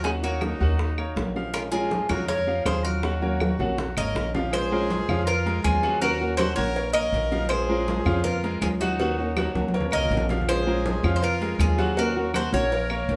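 A straight 4/4 groove at 161 BPM drives this sultry Cuban son and guajira excerpt in Bb minor. Ringing congas, tight high-tuned bongos and cowbell, and woody claves entering at 0.4 s sit softly in the background, with drum fills around 3.0 and 9.6 seconds, while the harmony sways between Ebm7 and Bbm7. Up front, a metallic, double-strung Cuban tres picks the melody over a thumpy, dark pizzicato upright bass, and a punchy, forceful trumpet with light vibrato adds a second line; a fingerpicked flamenco guitar on fresh strings supplies accompaniment, and a brilliant grand piano with short sustain plays arpeggios, the band playing live together in one moderately reverberant room.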